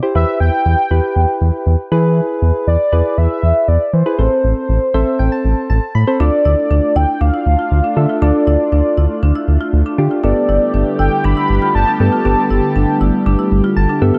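A straight 4/4 pulse at 119 BPM drives this nostalgic, upbeat pop excerpt, anchored by a round, deep analog bass and soft electric-piano-like synth keys with chorus, which add short fills at 4.7 seconds and again near the close. A velvety synth lead with vibrato carries the melody over chords moving from Em through E and Am to Dm and Gadd9. At 6.2 seconds a woody marimba enters with tape-echoed arpeggios, joined moments later by a swirling, phased analog pad, all set in light digital reverb.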